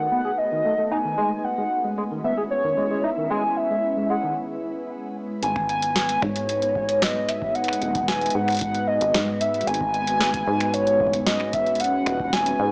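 IDM at 113 BPM in G# phrygian with a cerebral, melancholic mood, where a warbling, detuned lead with tremolo and tape echo carries the melody over a glassy FM pad with sidechain pumping, while a barky, overdriven tine electric piano plays arpeggios until 4.3 s, and after a break a rubbery acid bass, a booming analog drum machine with crisp snare, metallic hats and finger snaps, and a deep electronic kick in the background enter around 5.4 s, all heard through a dry, gritty cassette-and-small-speaker sound.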